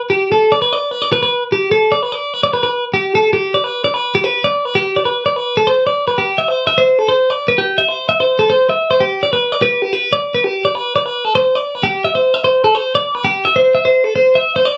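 Intricate and wistful, this rock excerpt in G major moves in 7/8 at 297 BPM counted in eighths with a straight feel, tuned a little under standard pitch. A lone twelve-string electric guitar carries the whole piece from 0.1 to 14.8 seconds, its bright, twangy, clean picked tone compressed and placed up front while it stays between G4 and E5. The sound sits in a wet studio reverb with a rolled-off top end, and the music shifts into a new section at 3.4 seconds before the cut.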